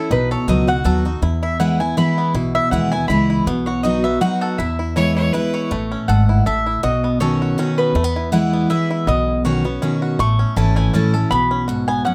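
A lilting waltz-time pulse with a swung eighth-note feel drives this lively, virtuosic bluegrass passage, cut from a longer piece. Two melody lines run together throughout: a mellow, woody mandolin with its doubled strings sits higher, while a twangy, percussive banjo played with fingerpicks carries a tape echo and sits further back in the mix. Up front, a full-bodied dreadnought steel-string guitar picks out a bright accompaniment, and a dark pizzicato upright bass anchors the low end. Briefly, from 5.0 to 5.7 seconds, a single clear fiddle adds an intense second line with light vibrato, an airy bow and a boxy tone. Close, detailed microphones and light reverb keep the acoustic ensemble crisp and present as the harmony moves through open, suspended colors at its close.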